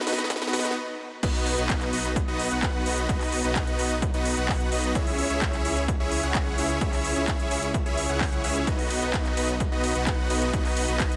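Huge, lush supersaw chords lead this uplifting, triumphant festival progressive house excerpt at 129 BPM in B major, their detuned sawtooth unison sitting up front with sidechain pumping and dub echo as they carry the riff between B3 and F#5. It opens with a short build-up, a drum fill from the big-room dance drum kit that gives way to a brief stop before the drop lands at 1.2 seconds. There the detuned saw bass enters, thick and mellow with chorus and its own sidechain pumping, holding low between B1 and C#2. A punchy, overdriven electronic kick, re-recorded in a large room, drives the straight 4/4 groove alongside the kit's huge snare, crisp hats, handclaps, crash and ride, which carry a tape-warm sheen. The harmony moves from B to C#m at 5.0 seconds and back to B at 8.7 seconds, all set in light reverb, as this cut from a longer piece stays in full drop mode to the end.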